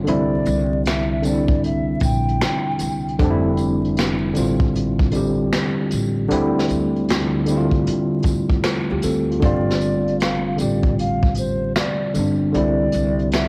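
A worn, slightly out-of-tune tine electric piano opens this melancholic, reflective lo-fi hip hop cut at 77 BPM, its mellow chords sitting up front, softened by cassette tape and a low-pass filter as they move through Cadd9, Fmaj7, Dm7 and Gsus2. Beneath it, a plucked upright bass with steel strings adds a woody, growly thump, given extra grit by transformer saturation. A vintage brush kit of kick, medium-tuned snare, hi-hat and finger snaps enters almost at once, rolling along on swung sixteenths in 4/4 with a punchy but rolled-off sound roughened by 12-bit sampler grit and tape. An airy, hollow concert flute carries the tongued, vibrato-touched melody until 3.2 seconds, falls silent, then returns at 9.4 seconds, filtered and taped like the piano. A close, dry tambourine jingles faintly throughout. Light reverb, small-room ambience and vinyl crackle give this fragment of a longer piece the intimate, home-taped feel of a cassette recording.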